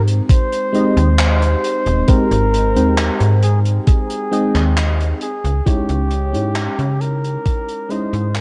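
This nostalgic, dreamy vaporwave fragment, cut from a longer piece, opens at 0.0 seconds with a soft, round FM electric piano and a snappy slap-like FM bass. The piano sits low in the mix, its dark, vintage tone warbling through analog chorus over a faint noise layer. The metallic-edged bass sits up front. A tight soul drum kit adds handclaps and hi-hat with a rolled-off top and gated reverb, while a thumpy, sampler-style electronic kick drives the slow 67 BPM pulse in 4/4 from the front of the mix. From 0.3 seconds a breathy flugelhorn carries a jazz-style solo line with vibrato and scooped notes, its smooth top trailed by tape echo. Over a studio ambience, the harmony moves from Abmaj7 to Dbmadd9 in A-flat major, and the sound begins fading out at 3.3 seconds.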